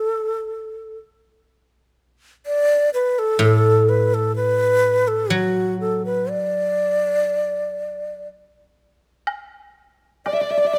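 A breathy, end-blown xiao leads this short, pastoral excerpt of Chinese traditional chamber music, carrying the melody from 0.0 s to 10.8 s with an unsteady, vibrato-laden tone that sits close and up front. The pace is slow and graceful, around 62 BPM in 4/4 but played with a free, rubato feel in a D gong mode. From 3.4 s to 8.3 s a guzheng adds low accompaniment, its fingerpicked notes bright, silvery and ringing. Near the close a dry, close woodblock ticks softly from 9.3 s, and at 10.3 s a shimmering hammered dulcimer and a mellow, hollow large dizi with its buzzing membrane join briefly on a second line. Light reverb and detailed, close microphones keep each bamboo and string voice intimate and clear.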